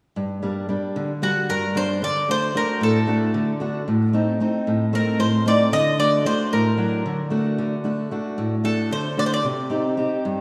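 Greek folk in an uneven seven-beat metre, this short excerpt from a longer piece has a cool, moody character, with a straight feel that keeps the lopsided pulse clear. A fingerpicked steel-string acoustic guitar opens the passage at 0.2 s and carries the accompaniment through to the end, sitting up front with a warm concert tone. The bouzouki enters at 1.2 s with the melody, its bright, metallic double strings, some doubled at the octave, placed close and present before it falls away at 9.4 s. The harmony moves through minor and diminished colours, settling on a dark minor chord at the very end as the guitar rings on alone. Both instruments are bathed in a lush, lingering hall reverb, though the overall mix keeps the rough, unpolished feel of a home demo.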